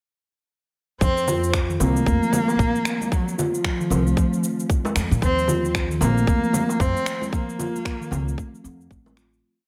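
A swung 4/4 groove at 114 BPM, with 16ths swung at 59%, starts this brief organic downtempo piece at 1.0 seconds. A tight, soft electronic kick sits up front, while a layered beat of cabasa and finger snaps, tape-toned and re-recorded in a large room, fills out the pulse. Bright, vintage congas and bongos with a band-limited edge join at 1.3 seconds, while a dark, woody upright bass, present from the start, plays a thumpy dub-style line on gut strings, pizzicato, with sidechain pumping. A steel tongue drum struck with rubber mallets repeats a 16-step arpeggio sequence in a round, pure, ringing, meditative tone from a boxy small room, treated with tape echo. Up front, a single bowed cello carries an expressive, motif-based melody of call phrases with vibrato, soft attack and portamento, also through tape echo. The harmony moves from Fsus4 to Ebsus2 and then Bbsus2 under light reverb, setting a warm, mystical mood before the piece fades out from 6.6 seconds.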